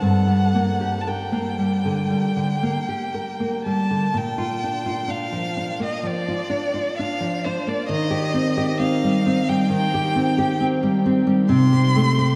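Drenched in a huge reverb that places the duo in a vast, echoing space, this romantic piece for violin and classical guitar unfolds with a solemn, elegiac mood and a freely breathing rubato feel. A rich, focused bowed violin with vibrato carries the melody, while a dark, full-bodied nylon-string guitar, fingerpicked and set a bit louder, supplies the accompaniment; both play up front from 0.0 to 12.4 seconds. The harmony shifts at 4.2 seconds into a second passage, and the fragment is cut from a longer piece.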